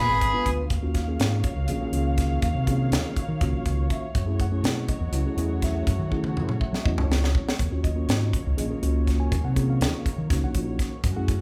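Slick and nocturnal, this fragment of electric jazz fusion in 7/8 opens with a breathy silver concert flute note and a bright overdriven electric guitar, both of which stop at 0.5 s, leaving a mellow tine electric piano, a dark, woody studio string section holding sustained chords, a round, punchy fingered electric bass and a tight, up-front funk drum kit with a high-tuned snare (entering at 0.2 s) to ride minor ninth chords through a drum fill at 6.1 s, all within a moderate large-room reverb.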